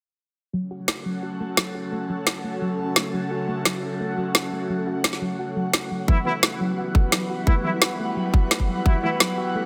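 A metallic, inharmonic drone with an eerie FM edge holds sustained chords from 0.8 s, its slow attack and long release bathed in chorus and its own reverb while sidechain pumping ripples through it. This tense, aggressive cut of dark technical drum and bass runs at 173 BPM in 4/4 with a straight feel, set in F# phrygian and moving from F#m to Emadd9 at 6.1 s. Around it, a soft, round pluck traces arpeggios from 0.5 s, dark and in the background with lush chorus and delay, while an airy, breathy pad adds a bright, detuned texture through chorus and phaser, both also pumping against the sidechain. A woody, up-front electronic snare enters at 0.9 s, and a tight, layered electronic kick and a clear brass ensemble with light vibrato and soft-attack stabs arrive together at 6.1 s, the brass trailed by delay. Filter sweeps move across the drone and the pluck throughout, all set in a moderate, lush hall reverb and a dense, heavily limited modern master.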